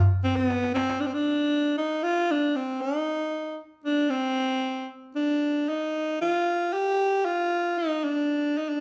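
Set in a moderate large-studio reverb with the band playing live in one room, this hypnotic, longing Arabic maqam ensemble excerpt at 115 BPM in a straight 4/4 features a gritty, close-miked alto saxophone playing an up-front solo melody from B3 to G4 across the full 8.8 seconds, while a crisp, deep metal-shell darbuka sounds close and dry only from 0.1 to 1.0 seconds, ending with a drum fill from 0.5 seconds before the saxophone carries on alone.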